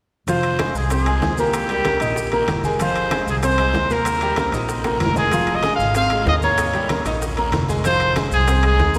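A straight salsa groove drives this passionate, fiery excerpt from a longer piece, where a clear, punchy vintage trumpet with scooped notes sings the melody up front over a brilliant grand piano with short sustain, a woody, dark pizzicato upright bass, and a very quiet bed of tight high-tuned bongos, bright low-tuned congas, ringing metal-shell timbales, a raspy saturated guiro and grainy maracas, with a drum fill at 4.8 seconds and a cathedral-like reverb washing over the whole church-hall sound.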